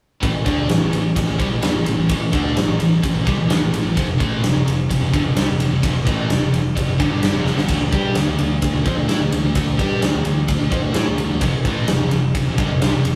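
A huge, up-front arena drum kit drives this aggressive hard rock excerpt at 129 BPM in A minor, its punchy kick, medium-tuned snare, crash and ride cymbals ringing bright, with a fill at 7.5 seconds. Two picked guitars play the riff together, an overdriven semi-hollow guitar in the background and a scooped, high-gain distorted guitar, over a growly, fingered electric bass sitting low in the mix. Moderate reverb and small-room ambience give the sound of a band playing live in one room as the chords move from Am to F5, D5 and back to F5.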